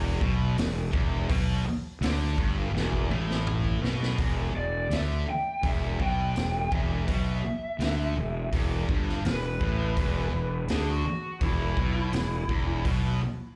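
Blues rock power trio with a southern rock edge, this driving, gritty passage from a longer live club performance pairs a thick, bright, double-tracked fuzz guitar riff with a round, punchy fingered electric bass that sits up front in overdriven fuzz. A raw garage drum kit with a punchy kick and a saturated, rolled-off top plays a fill from 2.7 to 4.2 seconds. At 4.6 seconds a lo-fi lead guitar through a small cranked amp, overdriven and with slapback echo, takes a solo, all of it heard through the venue's PA with a touch of club reverb.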